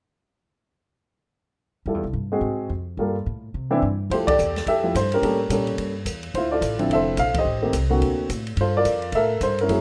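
A playful, swinging jazz piano trio excerpt in F major moves at a brisk 215 BPM in 4/4, its eighth notes carrying a light swing. A baby grand piano carries the melody from 1.9 seconds, sitting up front with a warm, intimate, natural tone, short sustain and audible action noise, while a woody, warm pizzicato upright bass on steel strings supports it from the same moment. The open acoustic drum kit enters at 4.1 seconds with hi-hat, ride, snare and kick, heard with dark cymbals, a medium-tuned snare and a boomy kick in an airy small-room sound. The harmony is rich with extended and altered chords such as Fmaj9, Ab7, A7b9 and D7b13, and the band hits accents together at 4.2 and 7.3 seconds. Light reverb and a small room ambience give the whole a rough home-demo character.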